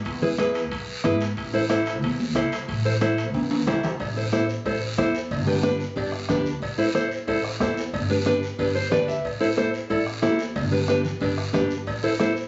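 A small, fingerpicked nylon-string guitar sits up front in this passionate, fiery cumbia fragment at 183 BPM, moving from E to A minor and then alternating between A minor and G, with its own brief fill at 8.6 seconds after a drum fill at 3.3 seconds. Under it, a woody pizzicato upright bass with steel strings anchors the low end, while raspy guiro, ringing metal-shell timbales and cowbell, and high-tuned congas played with hard hands drive the rhythm, and a soft-beater bombo stays in the background. A phone recording in the room, it carries studio ambience, compression, a moderate plate reverb and a dull, capped top end.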